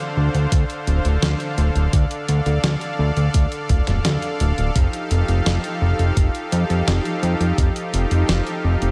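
A fat, saturated analog bass with a detuned sawtooth-and-square tone and a plucky filter sits up front in this nostalgic, nocturnal synthwave excerpt, moving from Dm7 to F7 at 4.8 seconds. Beneath it, a soft, smooth unison supersaw holds sustained chords with sidechain pumping, while a thumpy sampler-style kick, running until 7.7 seconds, joins a clean 12-bit drum machine of hi-hat, medium-tuned snare and toms. Both drum parts carry a tape-warm character and the sound of a large room, all within a light digital reverb.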